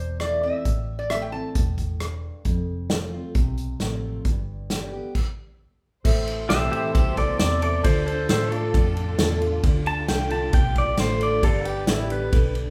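Dusty and brooding, this cut from a longer honky-tonk and classic country piece moves at 134 BPM in a straight 4/4, in A minor. A metallic, nasal lap resonator guitar, played up front with fingerpicks and a slide, opens the passage and drops out by 1.7 s, while a full-bodied dreadnought acoustic guitar and a round, punchy, foam-muted vintage electric bass carry the accompaniment. An acoustic drum kit sits up front with a punchy kick, a medium-tuned snare struck with bundle sticks, and touches of hi-hat, ride, crash and rim click, with a brief stop before the second section. At 6.5 s the pedal steel guitar takes the lead, clean and compressed, played with fingerpicks, slide and volume swells, as a second steel holds soft chords behind it. A dark, mellow grand piano with audible action noise and a lush, bowed symphonic string section with smooth vibrato join in the background, all set in a moderate large studio reverb that captures a band playing live in one room.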